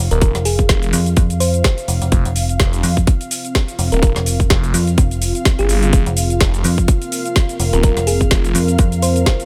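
A dark analog pad and a metallic FM bass open this swaggering, gritty bass house excerpt: the pad is deep and moody with chorus and sidechain pumping, and the bass is digital and tube-saturated. Within a fraction of a second, several parts join in. A swirling, detuned saw bass comes in with phaser and overdrive. A round, tine-like synth pluck carries the melody through tape echo. An overdriven garage kit of woody snare, hi-hat and shaker plays with a swung feel, and a tight, up-front electronic kick drives beneath it. An ethereal, airy pad with ensemble chorus, reverb and phaser sits in the background, and the saw bass drops out at 8.5 seconds.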